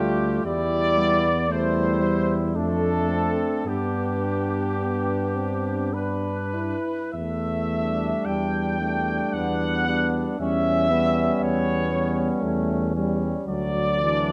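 Heard through close, detailed microphones in a moderate concert hall reverb, this short cut from a longer classical piece for brass band has a hymn-like, lyrical and warm mood. It moves slowly in 3/4 at roughly 47 to 59 BPM, with a free, rubato feel. Up front, the trumpet section carries the melody between G4 and G5 with light vibrato and a smooth top, while a flugelhorn sings a second line below it. A clear trombone and a mellow, punchy euphonium sit in the background as accompaniment, and the tuba anchors the bass prominently from D2 to G2. The harmony passes from C/E through Dm/F and G to Em7 at 7.1 seconds and Em6, arriving on D at 13.5 seconds, just before the excerpt ends at 14.3 seconds.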